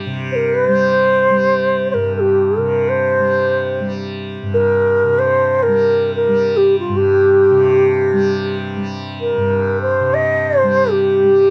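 An airy, hollow bansuri carries the melody up front, entering at 0.3 s with a soft attack and vibrato. It ranges from F4 up to a slightly sharp Eb5, with a longing, introspective quality in free time. Beneath it, a softly plucked tanpura sustains a buzzing, shimmering drone on G, set in moderate studio reverb with a dark production, in this Hindustani classical passage cut from a longer piece.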